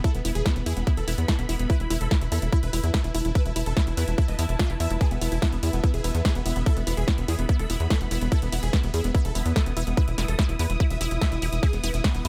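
A tight, up-front electronic kick and a punchy, tape-tinged techno kit of snare, hi-hat and ride drive a straight 4/4 pulse, joined from 0.1 seconds by a driving, ring-modulated sequencer bass, in this hypnotic, alien psychedelic trance excerpt. A bright, airy supersaw stab carries the melody through phaser and digital delay, while a lush detuned unison pluck plays a riff in the background and a distant, bowed studio string section adds vibrato texture, with the stab, pluck and strings all pumping against the kick. A very quiet electronic impact opens the passage, a swell rises from 11.0 seconds, and a barely audible pulsing, chorused pad surfaces at the very end, all in a dry, close mix.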